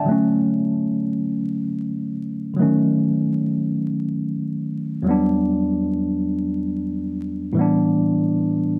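Hip hop in free time, this short excerpt cut from a longer piece carries a tough yet reflective mood. A lone tine electric piano plays throughout its 8.8 seconds, ranging from E2 up to D4, its tone worn and slightly out of tune but mellow, clean and direct, sitting up front in the mix. High-pass and low-pass filtering narrow its sound, while light reverb adds a touch of space. The chords move from Dmaj7 through D#m7b5 and Em7 before settling on A7sus4 near 7.6 seconds. The recording itself is dry and gritty, with vinyl crackle, and the tuning sits slightly below standard pitch.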